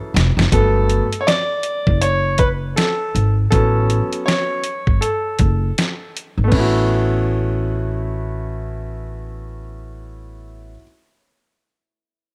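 A light studio reverb surrounds this relaxed, warm jazz-hop excerpt in A major, tuned to A4 = 435 Hz, moving at 80 BPM in 4/4 with a swung sixteenth-note feel. A short drum fill opens onto a pitched-down, gritty sampler-style boom bap kit with a thumpy kick, a medium-tuned snare, hi-hat and crash, sitting up front beside a woody pizzicato upright bass on steel strings. A clear, natural grand piano takes a solo from 0.5 to 6.5 seconds over Gmaj9 and A6 chords, and the drums drop out at 6.7 seconds while piano and bass carry on.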